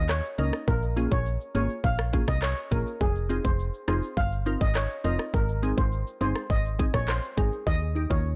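A straight dancehall groove of tight kick, metallic hi-hat, rim click, handclaps and shaker drives this hypnotic, sultry excerpt, while a punchy, round FM bass sits up front, a glassy, detuned wavetable pluck with chorus enters at 0.4 seconds, and a mellow, shimmering steel pan with delay carries the melody in a dark, dry production.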